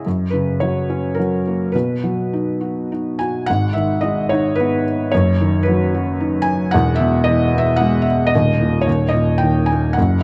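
Warm and hopeful, this short classical excerpt presents a lyrical solo piano piece in 3/4 at 109 BPM, played with a flexible rubato feel. The only instrument is a felt-muted upright piano, whose soft, mellow tone has an intimate, vintage character that sits up front under close, detailed microphones and light reverb. It ranges from D#1 up to G#5, opening in B major before turning toward G# minor from 3.5 s. The harmony moves from F# and B into G#m, then through B/F# and E before arriving on a D#5 chord near the end at 8.3 s. The tuning sits slightly below standard pitch, with A4 at 437 Hz, adding to the gentle, old-fashioned glow of the sound.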